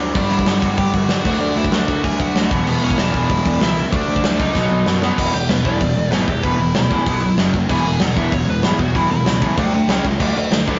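A crunchy, bright overdriven guitar and a very quiet, sludgy distorted guitar open this rowdy, upbeat punk rock clip together, picking riffs over a growly fuzz bass that sits in the background. A thick, double-tracked fuzz guitar joins them at a very low level, and a big acoustic rock kit arrives up front with a tight kick, a medium-tuned snare, hi-hat and crash, its mid-forward sound set in a large room with a rolled-off top. At a driving 191 BPM in straight 4/4, a nasal lead guitar with a parked wah carries the melody above the heavy wall of riffing, moving over chords that include G5, D, E5 and B. A drum fill starting at 4.6 seconds sets up the second half, where the wah-tinged lead breaks into a solo from 5.2 seconds over E5, B5, F#5 and D5 changes. The whole cut has the rough, saturated feel of a rehearsal-room recording, with a light touch of reverb and a dull, capped high end.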